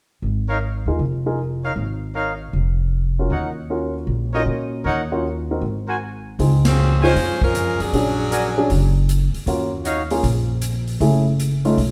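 An edgy, close-miked saxophone section carries the melody with light vibrato, arriving at 6.7 seconds and holding until 9.0 seconds in this joyful big band swing fragment, cut from a longer piece, in Db major at 156 BPM. Beneath it, a woody pizzicato upright bass with steel strings sits up front and drives the swing, while a clear, tight trumpet section punches out stabs in jazz style. A dark, mellow baby grand piano offers intimate accompaniment with a worn, short-sustained tone and audible action noise, moving through chords such as Db69, Ebm7 and Dbmaj7 before a brief break with the chords dropping out. The swinging drum kit joins at 6.4 seconds with airy, polished hi-hat, ride and dark cymbals, a medium-tuned snare and a punchy kick, and the whole band hits an accent just before the saxophones come in. The group plays live together in one room, wrapped in a moderate stone-room reverb that adds a natural ambience.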